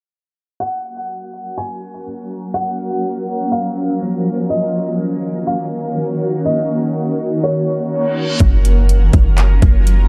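Atmospheric cloud-rap hip hop with a dreamy, blissful half-time feel, where a soft, felt-muted upright piano melody with tape echo and audible action noise floats over a shimmering, ethereal pad with chorus, phaser and sidechain pumping, all under a dark low-pass filter sweep, until a faint reverse cymbal at 8.1 seconds leads into an impact at 8.4 seconds, where a deep, boomy 808-style bass and an up-front trap kit of hard-clipped kick, metallic hi-hats and handclaps arrive.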